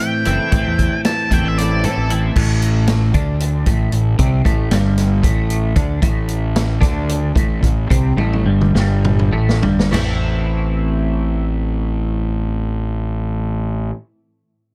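Mysterious and trippy, this psychedelic rock excerpt in 7/8 and A minor opens on a dark octave-fuzz lead guitar solo with tape echo that drops out at 2.1 s, while a bright, twangy twelve-string electric guitar riffs through a rotary speaker over an overdriven, round fingered bass and an up-front vintage drum kit with a punchy kick; the pulse of 194-229 BPM (eighths) slows down from 6.0 s into a drum fill that ends at 9.9 s.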